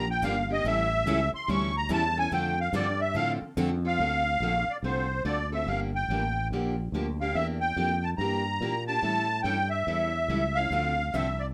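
Acoustic string swing in the jazz manouche style, this bittersweet, fiery excerpt moves at 143 BPM in D minor, with a reedy, shimmering musette accordion carrying the melody up front over a minor progression that settles on Dm7. Two picked steel-string acoustic guitars accompany, one warm with finger squeak and the other bright, full-bodied and set in the background, dropping out at 3.7 seconds and returning at 10.7 seconds. A growly, punchy fretless electric bass sits up front beneath them, all in a moderate club reverb.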